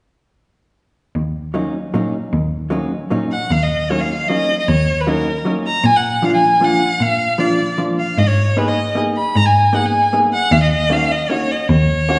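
An expressive bowed violin carries the melody from 3.3 seconds, its rich tone shaded with vibrato and portamento, in this nostalgic, whirling musette waltz excerpt in Eb minor, taken at a rubato 154 BPM in 3/4 and tuned to A4 = 435 Hz. Beneath it, a pure, floating cello bowed sul tasto with a soft attack holds the bass from 1.2 seconds, and a dark, clean electric hollow-body jazz guitar adds compressed, picked accompaniment from 1.5 seconds, moving through Ebm7, Bb and Abmadd9 before returning to Ebm7. A wet recital-hall reverb with a 1.7-second decay surrounds the trio, and the top end stops at 10.3 kHz, giving a mellow, vintage air.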